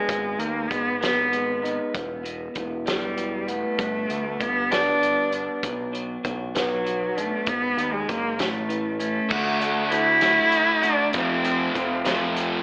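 In a straight 6/8 at 65 BPM, this brooding, angsty quiet-loud alternative rock excerpt is led by an up-front bowed cello singing the melody with vibrato, portamento and tape echo, over lo-fi, slightly broken-up arpeggios from an electric guitar through a small old amp bathed in spring reverb. Beneath them sit a growling, overdriven picked bass and a distant, roomy indie drum kit with dark cymbals, a fat snare and a punchy kick, moving through chords such as G#m, Em, G and Bm. At 9.3 s a double-tracked fuzz guitar riff enters as the harmony shifts to D and F, and the whole mix carries an AM radio character in a moderate studio reverb.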